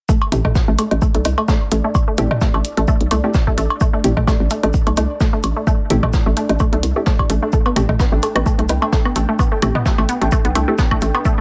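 Minimal techno at 129 BPM in A minor with a sparse, hypnotic swing, where a deep up-front electronic kick and a hollow, bouncy FM bass drive a squelchy resonant blip-pluck riff with chorus, dub echo and sidechain pumping, while clicky electronic hats, layered electronic cowbell, toms and woodblock with tape echo, a quiet jazz brush kit of hi-hat, shaker and snare, crisp wavetable chord stabs in the background, and a pulsing gated texture entering at 0.9 seconds fill out a small-room excerpt cut from a longer piece.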